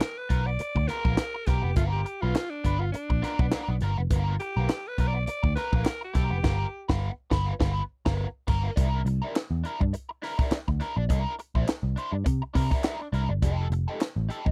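A dry, close recording with a 1970s studio character frames this strutting, gritty funk cut, taken from a longer piece and moving at 103 BPM in 4/4 with a light sixteenth-note swing in G mixolydian. A raspy alto saxophone carries the melody as a forceful, edgy solo with vibrato, ranging from D4 to D5 and falling silent at 6.9 seconds, partway through a band accent that runs from 6.4 to 8.8 seconds. Beneath it, a crunchy overdriven guitar with wah supplies bright, picked accompaniment throughout. A compact cocktail drum kit sits up front with a punchy kick, a high-tuned snare, hi-hat and dark crash cymbal, while a vintage foam-muted picked electric bass enters at 0.3 seconds with a round, amped low end reaching down to F1. Hollow group handclaps sit in the background, and the harmony moves from G7#9 to C9 at the start of the second section, then to F9 near the close.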